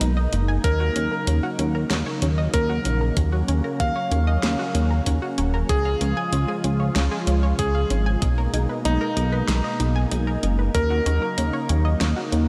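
Synthwave with a cinematic, driving mood, this dreamy mix is soaked in lush hall reverb as a bright, cutting electric grand piano carries the melody through tape echo over smooth, detuned pad chords that pump with sidechain and shimmer with chorus. Round analog pluck arpeggios add sparkle with a cassette-tape tint and their own echo, while a glossy, mellow chorused synth bass sits up front. A pop drum kit lays down a fat snare and hi-hats, and an overdriven, thumpy electronic kick joins at 0.6 seconds and drops out at 10.9 seconds.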